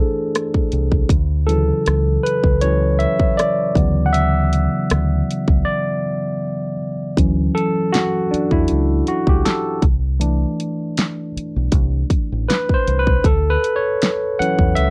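A barky, lightly overdriven tine electric piano with phaser opens this relaxed, soulful neo-soul R&B excerpt at 0.0 seconds, carrying a solo over lush major-ninth and thirteenth chords in D major at a laid-back 79 BPM with a gentle sixteenth-note swing, before an electronic, layered pop drum kit with a punchy kick, fat snare and warm hi-hats joins at 0.4 seconds and a dark, round fingered dub bass settles in at 0.7 seconds, all close, dry and up front in a 1970s-style studio sound, with a brief break before the second section.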